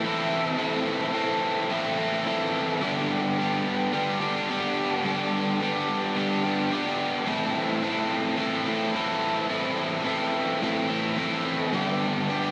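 An overdriven, double-tracked electric guitar sits up front, playing alone from 0.0 to 12.5 seconds with picked lines over a chorus shimmer and tape echo. This dreamy, wistful rock fragment in straight 4/4, cut from a longer piece, moves between Am and G, returning to Am at 7.3 seconds. A long, lush hall reverb soaks the whole mix.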